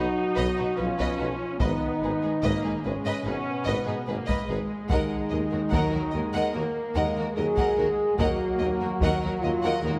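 This recording sits in a moderate concert hall reverb, giving the orchestra a full, spacious sound in which the distant, roomy French horn section carries the most weight. It is an epic, dramatic cinematic film score excerpt in Eb minor at 73 BPM in a straight 4/4, moving from B to Abm at 1.6 seconds and settling on Ebm at 4.9 seconds. A lush, close violin section sings the melody with smooth vibrato while a second, focused violin section plays a second line, and a rich viola section fills in the accompaniment. The horns and a tight, close-miked trombone section hold sustained chords, with the trombones tucked into the background. Underneath, a very quiet cello section, a soft-attacked, expressive double bass section and a very quiet solo tuba anchor the bass. A taiko ensemble struck with hard sticks enters at 1.0 seconds, its hits sounding dry and immediate against the hall.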